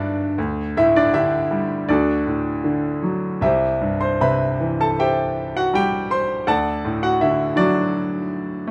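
A bright, brilliant grand piano sits up front in light reverb for this peaceful, warm classical excerpt, playing alone with open, short-sustained tones ranging from low C2 to C6 in a lyrical, rubato 4/4 that moves from Dsus4 to D, then C, and back to D at 6.5 seconds.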